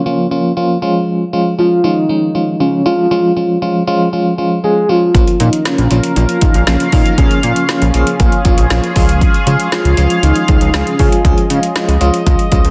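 Cool and nocturnal, this synth-pop excerpt at 118 BPM opens with a round, dark octave-layered synth lead carrying the melody through chorus, tremolo and digital delay over a mellow FM electric piano with tremolo, moving between Bb minor and Db chords, until at 5.1 seconds a glossy, detuned chorused synth bass, a deep house drum kit with deep kick, woody snare and metallic hats, and a bright, evolving resonant pad enter, all set in a moderate recital-hall reverb with a dense, heavily limited modern master.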